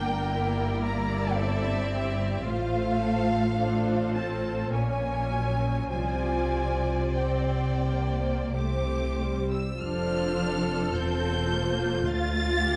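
Classical string orchestra music in a slow, romantic triple-time movement with a rubato feel, this serene, lyrical passage, cut from a longer piece, sets a high first violin section singing the melody with rich vibrato while a second violin section carries a focused line beneath it. A bright, distant viola section fills in the accompaniment, and smooth cellos join a lush double bass section to anchor the bass, all five sections bowing together throughout. The dark, warm production places them in a recital hall's reverb, with the music turning to a new section at 9.8 seconds.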